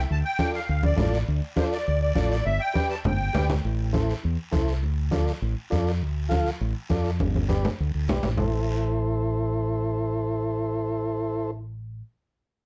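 Danceable and passionate, this short cumbia cut from a longer piece moves at a brisk pace in a dark production with light reverb. A round, up-front fingered electric bass runs through the whole clip, joined almost at once by a reedy, shimmering musette accordion whose airy melody, touched with plate reverb and tape echo, lasts only until about 3.5 seconds. A vintage combo organ with heavy vibrato supplies mellow, clean accompaniment from 0.4 seconds nearly to the end. Low-tuned, ringing congas played with hard hands sit close, while a raspy guiro sounds distant, as if in a large room, and both drop out at 8.4 seconds. Drum fills mark the turns between sections as the chords cycle through Dm, G and Am, leaving the bass and organ to carry the final stretch.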